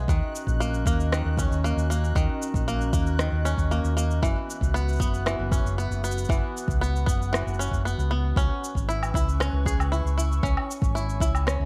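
A twangy, percussive bluegrass banjo, played with fingerpicks, carries delayed arpeggios through this wistful, intimate folktronica passage, cut from a longer piece, over a warbling, lo-fi pad whose detuned, chorused chords move from D#m7 to F#7sus4 to C#m7. A round, punchy fingered electric bass sits up front beside a deep electronic kick, while electronic shaker, rim click and woodblock, re-recorded in a large room, tick along in straight 4/4. In the background, a reversed, granular texture glimmers brightly, adding a dreamy sheen to the dark, warm production.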